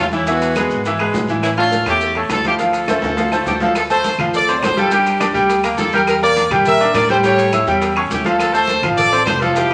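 A passionate, danceable salsa cut from a longer piece, running at a brisk 207 BPM in 4/4 with a straight feel, moving from D harmonic minor into D minor at 3.8 s. A brilliant, punchy horn section carries the melody up front with light vibrato and a loose pop-style section sound, while a bright grand piano sits equally forward with an intimate, present tone, long sustain and audible action noise. Underneath, a dark, thumpy upright bass with gut strings is played pizzicato, and the percussion fills out the groove: thick-skinned, hard-handed congas, ringing metal-shell timbales with a vintage, band-limited colour, tight high-tuned bongos played with soft hands, grainy maracas, a raspy guiro and woody claves. A drum fill from 2.9 s leads into the second section, where the harmony moves through Gm, Em7b5 and A7 before resolving to Dm7. The whole mix sits in a wet, large studio reverb with a layer of vinyl crackle.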